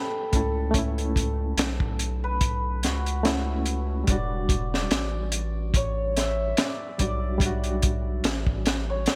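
A slow 72 BPM trip hop groove in 4/4 swings its sixteenths. A crunchy, saturated breakbeat kit sits up front with punchy kick, high-tuned snare and hi-hat under gated reverb, and it enters at 0.3 s alongside a deep, round analog bass. Over a reedy, slightly out-of-tune electric piano with fast tremolo, a hammered cimbalom carries the shimmering melody through vintage 12-bit sampler grit and tape echo, while the harmony moves from F#m7 to Em7 at 4.1 s, all brooding and smoky, with bright 1980s-style digital production and light small-room reverb on this brief cut from a longer piece.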